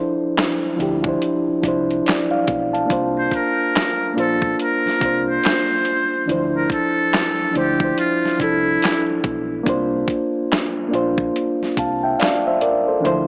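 A breathy, buzzy trumpet with a metal mute carries a whispered jazz-style solo with light vibrato from 3.2 to 9.0 seconds over a hazy, melancholic lo-fi hip hop groove at 71 BPM with a 16th-note swing, where a reedy, mellow electric piano with cassette-tape colour plays Dm9 and C9sus4 chords up front, a gritty, pitched-down boom bap drum kit adds a thumpy kick, snare, hi-hat and handclaps, a dark, round fingered electric bass sits low beneath, and a dreamy plate reverb wraps the whole excerpt in a small-speaker sound.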